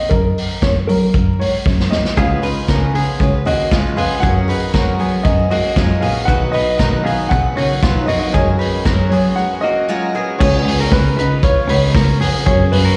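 Jangly indie pop at 116 BPM in F# major, bright and nostalgic, heard as a short cut from a live gig through the venue's PA with recital-hall reverb and vinyl crackle. A dark, woody, slightly detuned upright piano carries the melody through plate reverb, slapback echo and digital delay, over a rich bowed cello bass and a punchy, up-front vintage drum kit with dark cymbals, which plays a fill before the accompaniment enters at 2.2 seconds. There, a shimmering octave-doubled twelve-string acoustic guitar, a worn, reedy electric piano with fast tremolo, and compressed clean electric guitar arpeggios join, and after a break a very quiet sawtooth string machine adds sustained violin chords from 10.4 seconds over C#7 and F#add9.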